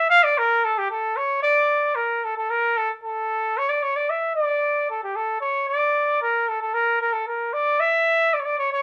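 Festive yet soulful, this short klezmer passage in 2/4 with a straight feel features a solo cornet with a straight mute, playing from G4 to F5 for its full 8.8 seconds. The muted horn sounds bright and nasal, with light vibrato, soft attacks and a classical poise. Its opening phrase returns at 5.4 seconds, set in a moderate studio reverb that lends a roomy, slightly distant glow.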